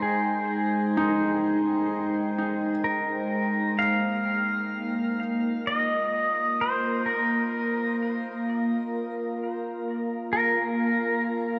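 A slow, straight 4/4 at 64 BPM carries this weightless, luminous ambient excerpt, where a dark, detuned wavetable pad sustains Abmaj7 before moving to Bbsus4 at 3.8 seconds, its sine tone morphing and warbling under a phaser and a filter sweep. Up front, a clean, twangy electric pedal steel guitar plays the melody with fingerpicks, slide and volume swells, while a felt-muted upright piano adds soft, intimate arpeggios with audible action noise until 3.8 seconds. Shimmer reverb colours all three parts, the steel and piano also carry delay, and a cathedral reverb with a 6.6-second tail bathes the whole piece.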